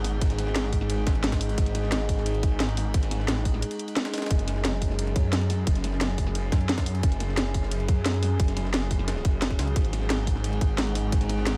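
An eerie, metallic drone and a snarling, distorted saw bass anchor this dark, mechanical excerpt of technical drum and bass at 176 BPM in a straight 4/4. The drone holds sustained, inharmonic chords moving between G#5 and F#5, its FM and wave-folded tone warbling through chorus and built-in reverb with a slow attack and long release, while sidechain pumping breathes through it. Below, the bass growls low and up front, its detuned sawtooth, square and sine layers driven by distortion and overdrive, with a moving notch and the same sidechain pumping. A produced drum and bass kit with a cracking snare and hi-hat plays from the start, and a tight, layered electronic kick joins at 0.2 seconds, while a very quiet, gritty breakbeat sampler kit adds a pitched-up, tape-warm snare and ride cymbal underneath. A short break falls between 3.6 and 4.3 seconds, and the whole passage sits in light reverb and digital ambience.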